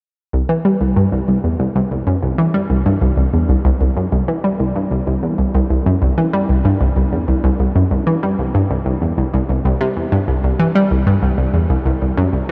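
A bright, round analog pluck with a ring-modulated edge and a filter sweep plays alone and up front from 0.3 to 12.5 s in this luminous, cosmic ambient excerpt, its low notes carried by chorus and analog delay into a huge, wet reverb.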